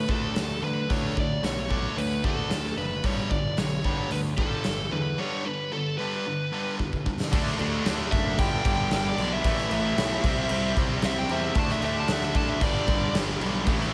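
A biting, overdriven lead guitar sings its melody up front over a heavy high-gain guitar with slapback echo, a second overdriven guitar and a punchy fuzz bass, while a big acoustic drum kit with a punchy kick enters at 0.1 s to drive this swaggering, anthemic hard rock, and after a drum fill a very quiet, sludgy double-tracked guitar joins at 7.3 s as the lead breaks into a solo, all set in a lush hall reverb for a big arena sound.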